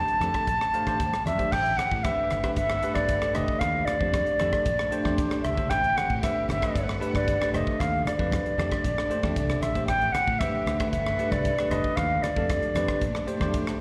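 A pure, up-front concert flute carries the melody over bell-like tine electric piano, a crisp fusion drum kit with punchy kick, fingered electric bass, softly damped congas in the background and a very quiet, lush string section entering at 1.5 s, in this slick, funky 115 BPM jazz fusion excerpt heard live through a venue's PA with recital hall reverb, its chords cycling through Bbmaj9, Am11, Gmaj9 and F13 after a brief electric piano fill at 0.5 s.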